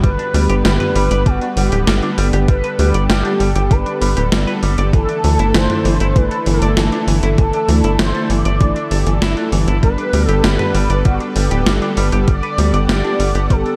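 Dreamy and nostalgic, this synthwave excerpt in G major moves at a straight 98 BPM, with chords settling from G to Dsus2/G and back. A thumpy, overdriven electronic kick and a gated 80s digital drum machine with gated-reverb snare, hi-hat and toms drive things alongside a tight, punchy sequencer bass that pumps, while a soft, detuned supersaw holds pumping chords in the background. Over them a smooth, nasal synth lead with vibrato, chorus and tape echo carries the melody, joined by clean, bright arpeggios from a semi-hollow electric guitar through digital delay and round, brassy synth stabs entering at 0.3 seconds. The lead, supersaw, guitar and stabs are bathed in shimmer reverb within a dark production.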